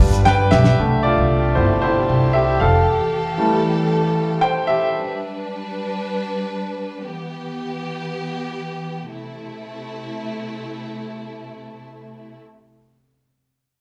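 In free time, this hopeful piano-driven pop passage in C major opens with a damped, dark 70s drum kit whose fill ends at 0.8 s, alongside a woody pizzicato upright bass and a brief mellow French horn section set in the background. A clear concert grand piano with slapback echo then takes a solo over chords moving from C6 through Fmaj7, G and Em, while a lush, bowed string section with expressive vibrato holds sustained chords until 12.4 s. The whole passage has the feel of a live club gig heard through the venue's PA, with light reverb.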